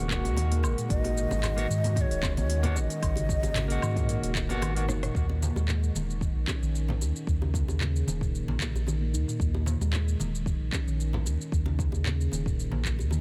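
A dense, heavily limited mix in digital ambience opens this hypnotic organic downtempo excerpt at 113 BPM in Eb minor pentatonic, where a round sine sub bass, a deep electronic kick, an overdriven kit of smooth hats, handclaps, rim click, shaker and woodblock, hard-hand bongos and congas, and meditative nitrided-steel handpan arpeggios with digital delay carry through, while a clean fingered electric guitar, a detuned sawtooth pad with chorus and tremolo, and a breathy, close-miked low ney with vibrato and tape echo colour the opening until a drum fill at 4.9 seconds leads into the second section at 5.2 seconds.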